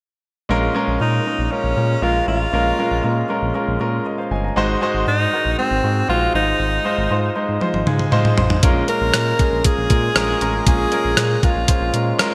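A straight 4/4 pulse at 118 BPM drives this moody, urgent slice of 1980s-style pop in Bb minor, cut from a longer piece. A clear, intimate concert grand piano carries the accompaniment from 0.5 seconds, its polished tone showing deep bass, long sustain and audible action noise, while a smooth sawtooth-and-triangle synth bass underpins it with mellow, sustained notes. At 1.0 seconds a bright alto saxophone takes the solo melody in a pop style, its vibrato trailing through a digital delay. The harmony moves from Bbm7 through Ab7 and Fm7/Ab before returning to Bbm7. A gated 80s digital drum machine arrives with a fill at 7.6 seconds, bringing a thumpy kick, hi-hat, rim click and toms with a tape-warm, sampler-style punch and gated reverb. A lush hall reverb and bright digital production give the sound its period sheen.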